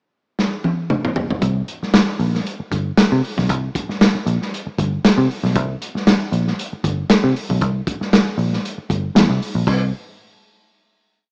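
Funk with a gritty, playful mood, moving at a medium pace with a light swing on the sixteenths. A crunchy breakbeat drum kit opens the piece with a fill from 0.4 seconds, using crash, hi-hat, kick, snare and toms. It is saturated and mid-forward, with a tight kick, a medium-tuned snare and dark cymbals under a rolled-off top. The kit plays a syncopated groove with ghost notes. At 1.4 seconds a vintage muted picked electric bass comes in, round and foam-muted through an amp, playing a syncopated riff anchored on the downbeat with muted ghost notes and chromatic approach notes. Both parts sit up front in a rough home-demo mix with light reverb and a small-speaker sound, and the groove closes on a final chord at 9.7 seconds.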